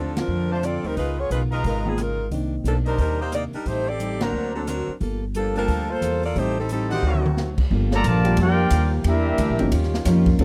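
A bright, tightly blended saxophone section opens this dramatic, sultry big band swing excerpt with the melody, carried over a woody pizzicato upright bass sitting up front and a boxy picked acoustic guitar tucked in the background. A dark, mellow baby grand piano with audible action noise and a polished, airy drum kit with a punchy kick join almost at once, and the band hits an accent at the very start. Vintage-toned trumpets with vibrato add stabs while the saxophones lead, and a drum fill at 7.0 seconds marks the arrival of a new section. There, a present trombone section plays a second line, a very quiet, soft-attacked trombone section holds sustained chords, and a smooth-topped trumpet section takes over the melody with a slapback echo from 7.9 seconds. The recording is dry and close in a 1970s studio style, with the harmony moving through rich minor-ninth and altered dominant chords.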